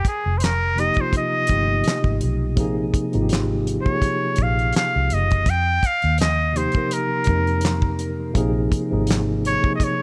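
R&B and neo-soul at a relaxed 83 BPM with a gentle sixteenth-note swing, this smooth, soulful excerpt in Bb dorian features a nasal, straight-muted trumpet singing a jazz-style melody with vibrato over a dry 70s drum kit with a fat snare, tight kick, hi-hat and handclaps, a round, foam-muted fingered electric bass entering at 0.3 seconds, and a mellow tine electric piano joining at 0.8 seconds on F9sus4 and Bb9sus4 chords.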